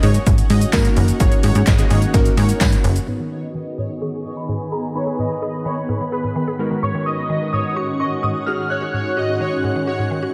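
In straight 4/4, this confident, energetic dance-pop piece opens on a drop where a punchy, overdriven analog drum machine and a plucky, funky analog bass sit up front with a faint, jingly tambourine. The drums and bass fall away around 3.1 seconds, and a filter sweep carries a dreamy, reverb-soaked passage in which a warbling FM bell and a woody, nasal mallet-like synth pluck join the soft, mellow supersaw melody, glassy digital keys and an ethereal, sidechain-pumping ambient pad.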